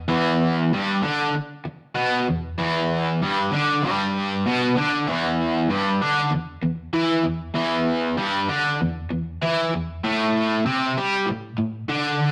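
Raw and swaggering, this short rock excerpt, cut from a longer piece, moves at 97 BPM in a straight 4/4 in E minor. A lone electric guitar carries the whole passage, crunchy and overdriven, picked and double-tracked so it sits bright and up front, spanning E2 to G4 with a harmonic tremolo coloring its tone. The first section runs to 5.1 seconds before a second section takes over, with the harmony resting on Em until the shift to Amadd11 at 10.0 seconds. A moderate stone-room reverb gives the guitar some air, while the rough rehearsal-room capture adds a warm saturation that keeps the sound unpolished.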